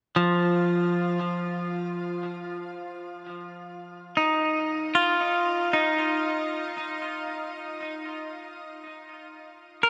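In free time, this serene, weightless ambient fragment cut from a longer piece features a solo clean electric guitar, bright and twangy and placed up front, playing alone from 0.2 seconds to 9.9 seconds between F3 and Bb4 over an F7(no3) chord, its picked, compressed notes carried by tape echo into a wet shimmer reverb with an 8.8-second tail and a top that stops at 10.5 kHz.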